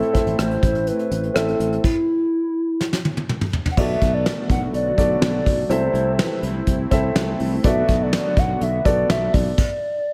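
This 1980s-style pop excerpt at 124 BPM feels nostalgic and urgent, with a hollow, woody clarinet-like synth lead carrying the melody through chorus and digital delay over a polished grand piano, a brassy sawtooth pad with chorus and tremolo in the background, a growly fretless electric bass entering at 0.3 seconds, and an up-front brush drum kit with a fat snare and gated reverb whose fill at 2.8 seconds leads into a new section before everything but the lead stops at 9.6 seconds.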